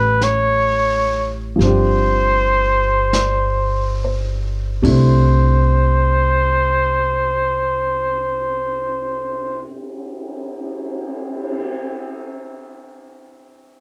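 Late-night and intimate, this fragment of a swung jazz ballad slows through its opening seconds as a breathy, whispered trumpet carries the melody up front with light vibrato and scooped notes. Woody upright piano with short sustain accompanies alongside a thumpy pizzicato upright bass and a vintage brush kit with dark cymbals and a punchy kick. The trumpet and bass fall away by 9.7 seconds, and the piano lingers until 13.8 seconds in a dark, warm production with light reverb.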